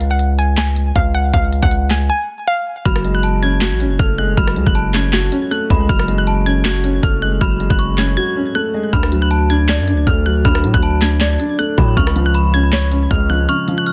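A hollow, detuned square-wave pluck carrying the melody over a distorted, saturated 808-style bass and a knocking, overdriven trap kit with crisp hats, sharp snare, claps and rim clicks opens this brooding, menacing half-time trap cut at 158 BPM in F# harmonic minor, with a brief break before a metallic, inharmonic FM bell line and a dark, boxy baby grand piano with audible action noise enter at 2.9 seconds, the drums dropping out from 8.2 to 8.9 seconds within a dense, heavily limited mix bathed in digital ambience.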